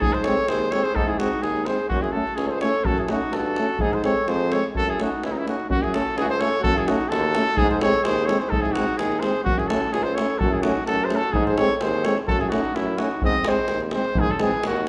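Restless and virtuosic, this Balkan brass band excerpt drives along at 127 BPM in 2/4 with a swung sixteenth feel in F# dorian sharp4, the harmony shifting between G# and F#m before a new section arrives at 13.2 seconds. A distant, roomy trumpet carries the melody up front while a vibrato-rich alto saxophone traces a smooth second line behind it, and a soft-attacked trombone and punchy euphonium fill in the accompaniment. Underneath, a punchy, vintage-tinged tuba holds the bass and a deep davul booms from a large room, all set in a wet recital hall reverb.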